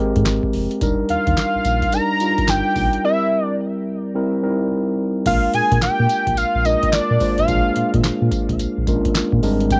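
This new jack swing excerpt has a bouncy, slick feel at 108 BPM in 4/4, with a sixteenth-note swing and the lo-fi grain of a home cassette recording in a dry, close space. A mellow tine electric piano opens at 0.0 s, clean and up front, laying down lush chords that move from Abmaj9 to Ebmaj7 before turning to C7 and then Bb7. Just after, a deep sine sub bass with an added octave enters, full and sustained. Alongside it comes a booming analog drum machine with a deep kick, crisp snare, metallic hats, handclaps, tambourine and crash, given a short room on the snare, clap and hats and a tape-softened edge. From 1.1 s a fat, detuned sawtooth lead carries the melody high above, evolving and thickened by a sub octave, chorus and vibrato. A break arrives at 3.0 s before the piece moves into its second section.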